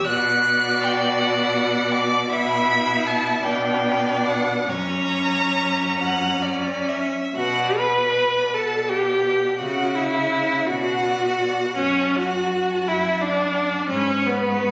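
Captured on a phone in the room with compression and a moderate large-studio reverb, this elegiac, yearning excerpt from a slow romantic string quartet movement sways in a rubato 6/8, with a focused, smooth-topped first violin singing the melody over a second violin's even line, a cello's close, vibrato-laden bass, and an up-front viola whose expressive portamento gives the accompaniment a rich, pleading voice.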